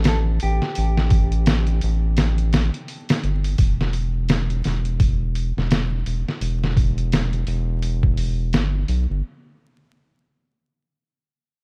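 A dark, clean electric guitar carries the melody at the start of this melancholic trip hop fragment, its fingered line sitting low in the mix and wavering with a warbly pitch drift and tape echo before falling away at 2.9 seconds. Underneath, a round analog bass and a sampler-style drum kit enter with it from the very first moment and sit up front. The bass is deep and evolving, with a fast attack and long sustain, blending square and sine tones into a mellow, wave-folded sound. The drums feel compressed, pitched down, muffled and tape-warm, with a thumpy kick, a medium-tuned snare and hi-hat riding a lazy sixteenth-note swing. After the guitar drops out, the brooding groove carries on with bass and drums alone until about 9.2 seconds. The production is dry, dark and warm, with a layer of vinyl crackle throughout.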